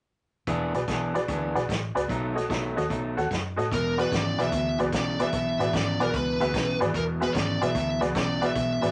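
A swung shuffle at 149 BPM in 4/4 drives this swaggering, gritty electric blues in E mixolydian, cut from a longer piece. From 0.5 s a vintage drum kit sets the groove with hi-hat, a tight kick and a medium-tuned snare, sounding acoustic with a rolled-off top, while a dark, foam-muted fingered electric bass rounds out the low end and an electric guitar through a small old amp plays a slightly broken-up, picked riff up front. At 0.7 s a detuned, jangly honky-tonk upright piano adds bright, present accompaniment in its upper-middle register. The harmony moves from E7 to B7 and then settles on E9 at 3.7 s, when a biting, overdriven lead guitar enters up front with the melody. A moderate club reverb gives the band the feel of a small live room.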